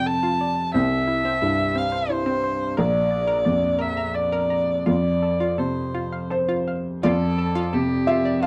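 Intimate and hopeful, this short excerpt of neoclassical piano and strings sways in a rubato 3/4 around 83-89 BPM in F major, where a veiled, con sordino violin sings the melody with vibrato and portamento over a soft felt-muted upright piano, while a hollow, bouncy square-wave pluck adds quieter bright arpeggios with chorus and slapback echo from 0.1 seconds, all set in a moderate booth ambience with a dark production.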